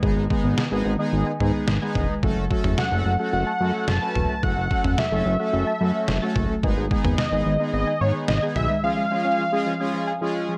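A melancholic, driving synth-pop excerpt opens with everything but the lead at once: a fat, saturated analog bass and a detuned 8-bit drum machine with a thumpy kick, fat snare and toms sit up front. Over them, bold, brassy analog synth brass with ring modulation, a filter sweep and chorus carries the accompaniment. Soft, round pluck arpeggios with chorus and analog delay drift in the background over a span from low to high registers. At 2.8 s a thick, detuned unison lead with vibrato enters with the melody, and the bass and drums drop out at 8.7 s. The production is dark, set in a moderate plate reverb, as the chords move from G#m to F#m and back before closing on C#.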